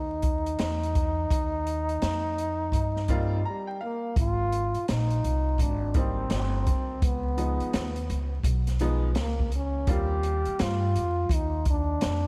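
A breathy solo trombone and a woody, pizzicato upright bass open this relaxed, smooth jazz-hop excerpt, with an open jazz drum kit joining at 0.2 seconds on hi-hat, kick and a high-tuned snare. The groove sits at 84 BPM in 4/4 with a swung sixteenth-note feel in Eb major, and the drums carry a small-room acoustic character and a boomy kick, placed up front alongside the thumpy, gut-string bass. The trombone's mellow, whispered tone, soft attack and light vibrato give the jazz-style melody an intimate quality, and a tape echo trails its phrases. A bright, slightly worn grand piano enters at 3.1 seconds with a fill that runs through a short break, then supplies sparkling accompaniment as the harmony moves from Eb through Abmaj9 and Db9 to a closing Eb69. Light reverb, studio ambience and a layer of vinyl crackle surround the whole performance, lending it a hip hop feel.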